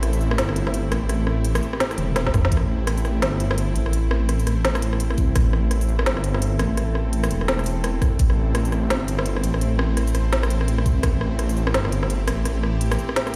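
A swung half-time drum and bass groove at 169 BPM in A minor sits on an overdriven organic electronic drum kit, with a woody snare, crisp hats, rim clicks and toms up front, while a knocking, layered electronic kick drum lands in sparse hits from 2.3 seconds, during a drum fill that begins at 2.0 seconds. Beneath it, a dark detuned saw bass rumbles and beats with deep, saturated sustain, as a tense, nasal, bowed-like drone holds evolving Am chords with vibrato, slow attack, gritty 12-bit sampler character and sidechain pumping. The heavy, cinematic mood is heightened by the sound of a big system playing in a bare room with large studio reverb, in a short cut from a longer piece that runs to 13.4 seconds.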